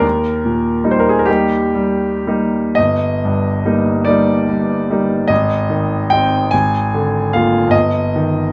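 A classical romantic nocturne for solo piano, this short excerpt from a longer piece unfolds in Eb major and 6/8 with a tender, nostalgic mood and a free rubato at a slow 37-51 BPM in dotted quarters. The bright grand piano sits up front across the full 8.5 seconds, its brilliant tone and long sustain carrying from low G1 up to Ab5 in a light reverb. The harmony moves from Eb through Ab at 5.3 seconds and a Bb7 over Ab before settling on Eb over G.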